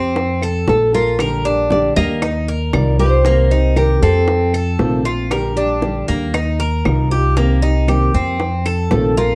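Cuban son in a guajira vein, this sunny, danceable excerpt moves at 117 BPM in a straight 4/4, cycling through Bb6, Cm7 and F7 chords in a dark, warm production with moderate studio reverb. A bright, metallic Cuban tres picks arpeggios on its double strings over a woody, pizzicato upright bass up front, while round, low-tuned bongos and dry claves tick along in the background. A full-bodied, fingerpicked nylon-string guitar carries the melody from 0.7 to 4.8 seconds, returning briefly at 8.9 seconds, as a second, deeper classical nylon-string guitar fingerpicks the accompaniment from 1.2 seconds.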